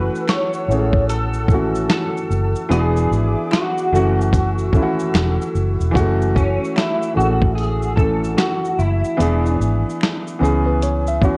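A nostalgic, reflective lo-fi hip hop piece with a lazy swung feel, drifting in the murk of worn, warbling old tape. A felt-muted upright piano carries the accompaniment up front, soft and intimate with audible action noise. Above it an electric guitar through a small old amp plays the melody, slightly broken-up and fingered, colored by ensemble chorus and analog delay. A detuned, sawtooth-and-triangle pad sustains chords in the background with chorus and phaser. Underneath, a dark, round, foam-muted electric bass and a gritty, compressed sampler-style drum kit with a thumpy kick and medium-tuned snare sit forward, joined by very quiet finger snaps, while the harmony moves between F#m7 and E7 before closing on C#m7. At 10.7 seconds a mellow tine electric piano, lightly overdriven and slightly out of tune, enters with a brief second line as the cut ends.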